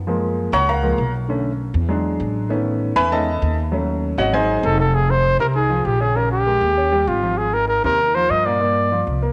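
Bathed in a moderate echo-chamber reverb, this driving, sophisticated fragment of Afro-Cuban jazz sets a woody, thumpy pizzicato upright bass on gut strings beneath an intimate, up-front concert grand whose action noise is audible, until a mellow trumpet playing in a jazz style enters at 4.6 seconds with light vibrato, scooped notes and a smooth top as the harmony shifts into a new section at 4.9 seconds.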